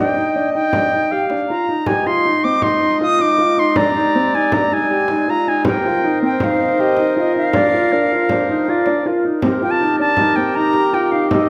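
Restless and pensive, this 11.5-second excerpt of contemporary chamber music in 5/4 at 159 BPM sets a reedy, pure-toned silver flute melody up front over a mellow clarinet second line and dark, long-sustaining baby grand piano arpeggios, with a frame drum entering at 0.7 seconds and a distant, roomy woodwind section adding sustained chords from 1.9 seconds, all within a recital hall reverb as the harmony moves from Ebmaj7 through Fm7, Abmaj7, Cm7 and Bb before a new section begins on Cm7 at 9.4 seconds.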